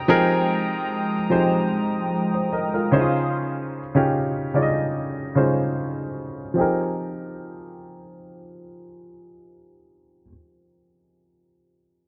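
A dark, mellow baby grand piano and a hollow, flute-like pad with chorus open this sensual, late-night R&B excerpt at 74 BPM, moving from Fm11 to Dbmaj9 under a filter sweep that runs until 6.6 seconds. The pad's soft-attack chords end at 3.3 seconds, leaving the intimate piano alone with audible action noise and short sustain until 12.1 seconds, returning to Fm11 along the way. A lightly swung 16th feel and a moderate spring reverb in an echo-heavy, low-passed mix keep the sound hazy and close.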